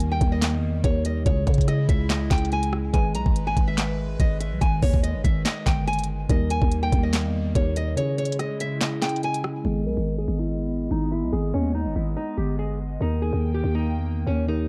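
Trap-style hip hop at 143 BPM in a half-time feel and G# harmonic minor, this menacing, hard-hitting cut sets a small, fingerpicked nylon-string guitar melody with finger squeak over muted, felt-like synth keys and an airy, breathy pad (both touched with chorus and phaser), a growling, buzzy 808-style bass up front, and a knocking trap drum kit with sharp snare, crisp hi-hats, handclaps and rim clicks that drops out at 9.5 s before a filter sweep takes over from 9.7 s in a dark, dry mix.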